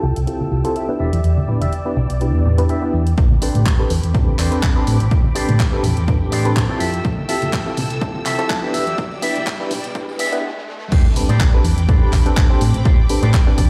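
A reedy electric piano with fast tremolo, phaser and sampler grit opens this funky, nostalgic filtered disco house excerpt, alongside lush bowed strings, a twangy envelope-filtered guitar riff, a round fingered bass up front, and bright hard-hand tambourine and congas in the background, all pumping under a low-pass filter, with a tape-warm house kit of hi-hat, handclaps and crash joining at once. A punchy analog kick arrives at 3.2 seconds to start a build-up with a filter sweep and a quiet riser, broken by a brief stop at 10.4 seconds. The drop then hits with a faint impact and closes on a clean electric guitar fill, all swung lightly and set in a large, reverberant room.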